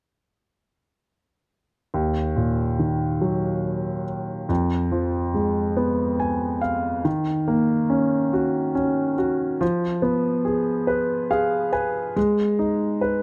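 Dark, lightly reverberant production frames this aching, melancholic pop passage in 6/8, cut from a longer piece, where an intimate, up-front grand piano with audible action noise and long sustain carries the accompaniment through minor and diminished chords, adding fills at 5.8 and 10.9 seconds before settling on Abm at 12.2 seconds.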